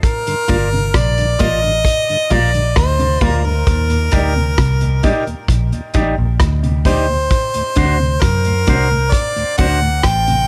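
Roots reggae with a laid-back, hypnotic mood, cut from a longer piece, where a clear, close-miked harmonica carries the melody up front with light vibrato, scooped notes and tape echo over a vintage drum kit of hi-hat, rim click and punchy kick and a dark, foam-muted fingered electric bass that sits round and punchy. A clean, picked electric guitar with tape echo and a very quiet, fingered electric guitar playing low arpeggios fill in the accompaniment, while a soft, flute-like tonewheel organ with chorus vibrato and key click stays in the background. Light reverb surrounds the parts as the harmony moves from Gm7 to Ebmaj7 at 3.7 seconds and D7 at 7.3 seconds.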